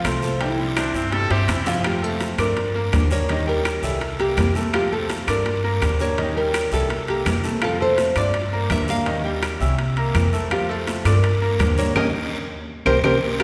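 A straight 4/4 Cuban son and guajira groove rides on soft, low-tuned bongos, woody claves, a raspy guiro and ringing metal-shell timbales, with a dark, thumpy gut-string upright bass up front, a fingerpicked classical nylon-string guitar accompanying with audible finger squeak, brilliant long-sustaining grand piano arpeggios, and a small second nylon-string guitar carrying the sunny melody from 0.2 s, while a present pop-style trumpet adds a brief second line from 0.8 s, drum fills and a closing band accent at 12.0 s punctuate the passage, and the whole excerpt sits in a wet concert-hall reverb.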